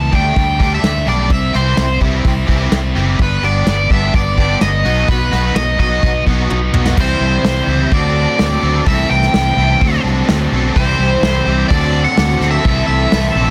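A biting, bright lead guitar sits up front with plate reverb and digital delay, carrying the melody through this cool, bittersweet indie rock passage at 127 BPM, over a second biting guitar riff, a crunchy chorused guitar and a growly, up-front fingered bass. A soft brush kit with a tight kick and medium-tuned snare plays a fill at 6.5 seconds before the second section moves through chords from C and D5 to Cmaj7 and Am/C. A mellow, very quiet overdriven combo organ with light vibrato adds sustained chords from 10.8 seconds, all within a light reverb and a dense, heavily limited modern master.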